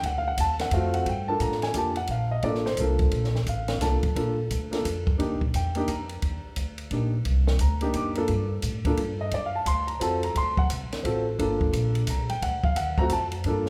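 A swung jazz waltz in three, this smoky, moody piano trio fragment features the upright piano soloing from the start, its woody tone up front with long sustain, over plucked steel-string upright bass and a dry compact cocktail kit of dark cymbals, high-tuned snare and punchy kick, with the trio set in a moderate recital-hall reverb.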